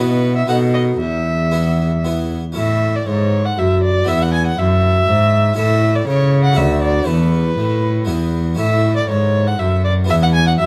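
A short excerpt from a longer classical piece opens with violin, harpsichord and cello sounding together from the first moment: a baroque-style sonata movement with continuo in A major, flowing and serene at 119 BPM in a straight 3/4. The single bowed violin carries the melody between B4 and G#5, its tone warm and focused with vibrato and a smooth top, placed up front. Beneath it, one bowed cello holds the bass line from D2 to C#3, rich, even and smooth with vibrato, and it is the most prominent part in the balance. The harpsichord fills in the accompaniment across a span from D2 to A4, a French-style instrument with three sets of strings, close-miked and dry, its plucked sound full and brilliant. The harmony moves from B7 to E, settles on A at 2.6 seconds, then passes through D and Esus4 before resolving to E and A again, and the passage closes on E at 10.1 seconds under a light reverb.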